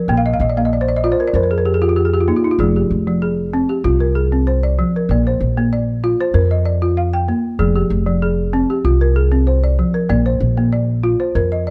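In a straight 4/4 at 96 BPM, this reflective, flowing West African traditional excerpt sets a round, dry balafon played with rubber mallets, sitting mid-forward and up front with arpeggios and an opening fill from 0.1 to 2.6 seconds, over a thumpy, gut-strung pizzicato upright bass with a dark, woody tone, as the harmony alternates between F minor and B-flat within a lightly reverberant, dusky production.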